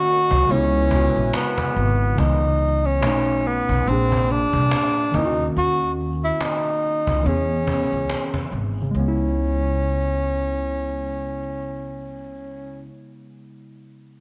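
A lazily swung 4/4 groove at 71 BPM comes from a woody, distant cajon played with soft hands until 8.9 s, beneath a dark pizzicato upright bass, setting a nostalgic, hazy lo-fi hip hop mood in C# dorian. A breathy, mellow tenor saxophone sits up front with light vibrato and scooped notes, while warbly synth keys with chorus and cassette-tape coloring supply accompaniment, and a very quiet detuned pad holds chords only for the first 2.2 s. The harmony moves from C#m7 through B9, A#7, D#m7 and E6 back to C#m7 in a light studio reverb, in a passage cut from a longer piece.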